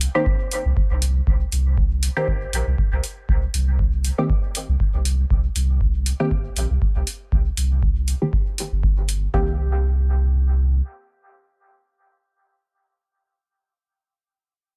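The recording sounds dry, with little reverb and some lossy compression artefacts, and it is cut from a longer piece. This is cavernous, meditative dub techno in C minor at 119 BPM in 4/4, with a 55% swing on the sixteenths and tuning at A4 = 442 Hz. A round, soft sub bass built from triangle and square waves sits up front with a fast attack and sustained tone, pumping with sidechain compression. An analog kick with a deep, tape-warm thump and metallic, forward hi-hats carry the groove. Over a C5 chord, a muted, detuned sawtooth stab plucks through a filter sweep, coloured by chorus, phaser, sidechain pumping and dub echo. At 9.3 seconds the harmony moves to Cm7 as the drums drop out, the bass stops at 10.8 seconds, and the stab plays alone until 12.9 seconds.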